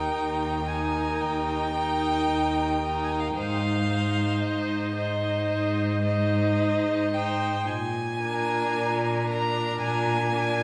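Classical string quartet music in a slow, lyrical romantic movement, this passage in Eb major moves at 56 BPM in 4/4 with a rubato feel, its harmony shifting from Eb to Ab at 3.4 seconds and to Bb at 7.7 seconds. The first violin sings the melody up front with a rich, focused tone, while a more distant second violin holds an inner line, the viola provides accompaniment, and the cello, smooth and even, anchors the bass from 0.1 seconds, each player bowing with vibrato. A wet concert hall reverb surrounds the quartet, and the passage is cut from a longer piece.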